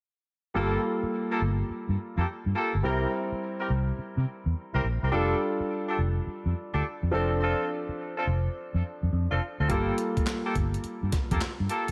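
A clear baby grand piano and a dark, vibrato-laden horn section playing punchy stabs with tape echo open this slick, confident new jack swing R&B passage cut from a longer piece, joined at once by a round, foam-muted vintage electric bass, all moving at 105 BPM with a swung sixteenth feel in G dorian through Gm9, C7, F69 and Dm7/F under a moderate plate reverb, until a gritty, compressed sampler-style breakbeat kit with a thumpy kick, handclaps, hi-hat and snare enters at 9.7 s as the progression returns to Gm9.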